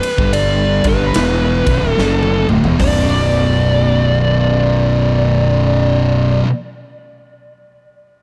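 A compressed, dark fuzz lead guitar with wah, distortion and tape echo sits up front beside a big rock drum kit with punchy kick and bright cymbals in this ominous, brooding stoner and doom metal fragment with a swung feel; the kit plays a fill from 2.0 s and drops out at 3.0 s, while two picked, distorted fuzz guitars grind out a riff in the background over a growly, overdriven fingered bass, the whole heard in a small room with light reverb.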